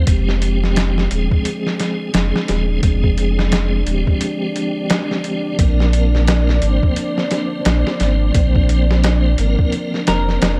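Brooding and melancholic, this trip hop fragment sets a piping, lightly overdriven tonewheel organ with key click, tape echo and fast rotary speaker over a round sine sub bass and a muffled, pitched-down sampler-style drum kit with a thumpy kick, while a dark, detuned analog pad with slow attack and chorus hangs quietly behind them, and a clean, picked semi-hollow electric guitar slips in at 10.1 seconds, all wrapped in an echo-heavy mix with light reverb and digital ambience.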